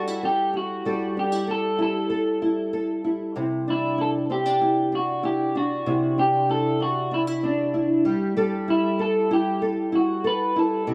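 Laid-back and dreamy, this short indie pop passage at 96 BPM pairs an up-front, small-sounding fingerpicked nylon-string guitar, colored by analog chorus and a warbly pitch drift, with a bright, twangy electric guitar melody through a small old amp, slightly broken-up and bathed in lush chorus and tape echo, as the chords move from Gsus2 to Cadd9 at 3.4 seconds and back to Gsus2 at 8.1 seconds within a dark, warm production and moderate studio reverb.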